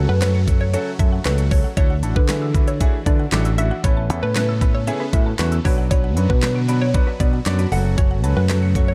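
The excerpt opens with a clear, polished baby grand piano, a picked electric bass, a sawtooth supersaw pad and a woody synth pluck all sounding together, with a hollow square-wave pluck carrying the melody from 0.1 seconds and a pop drum kit arriving at 0.2 seconds. It is summery, euphoric dance-pop in a straight 4/4 at 116 BPM, with sidechain pumping on the piano, pad, plucks and bass. The drums sit up front with a knocking kick, fat snare, crisp hats and handclaps, and the round, dark bass shares that forward placement. The lush, detuned pad is held in the background with a phaser, while the mallet-like FM pluck spins arpeggios high above with chorus and delay, and the bouncy lead pluck gets the same chorus and delay treatment. At 3.8 seconds a bright, twangy clean electric guitar enters in the background with a compressed riff bathed in lush chorus. The chords move through F#m, Dadd9, Aadd9 and Bm before returning to F#m, all within a dark, warm digital ambience.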